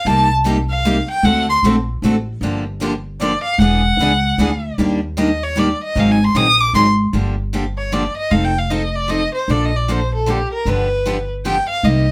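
Acoustic string swing in the jazz manouche style, this short cut from a longer piece moves at 153 BPM in 3/4 with a swung eighth-note feel in G minor, and the mood is virtuosic and swinging. A bowed violin carries a solo melody throughout, its tone rich and focused with vibrato and a smooth top, sitting up front in the mix. Two picked steel-string acoustic guitars provide accompaniment: one bright and up front playing the whole way, the other, with fresh strings, tucked in the background and dropping out at 6.9 seconds before reappearing briefly at 11.8 seconds. An upright bass played pizzicato gives a woody, thumpy foundation up front. The harmony moves through chords such as Cm7, E13, Ebmaj7 and Ab9, then turns through Gm7, F7 and Bbmaj7 to land on G7, all heard as a band playing live in one room with moderate studio ambience.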